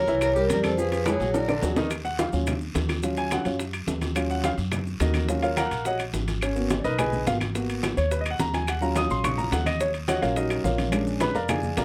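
Fiery and driving, this Afro-Cuban jazz excerpt in Eb minor moves at 213 BPM in a straight 4/4, opening with a brief vibraphone melody shadowed by a clear, bowed erhu with vibrato and portamento, both gone by 1.6 seconds. A drum fill carries the music to 1.9 seconds, where the concert grand piano, up front with deep bass, takes a solo over Ebm9 and Abm9 harmony that turns to Bb7#9 near the end, supported by a woody pizzicato upright bass. Ringing low-tuned congas, metal-shell timbales, tight high bongos, raspy guiro, grainy maracas and background claves fill out the percussion in a small room.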